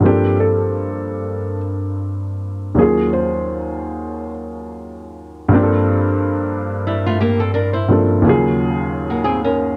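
A dark, woody upright piano opens this melancholic, reflective lo-fi hip hop excerpt at 88 BPM, comping up front through Gm11 and Ebm11 chords with a lightly swung 16th feel, its short sustain softened by cassette tape and a low-pass filter. A felt-muted upright piano, soft and intimate, carries a brief melody until 4.3 s through low-pass filtering and analog delay, and at 6.9 s a fingerpicked flamenco guitar enters up front with a second line, also filtered and delayed. Moderate studio reverb and a dark, warm production frame the piece, which is cut from a longer work.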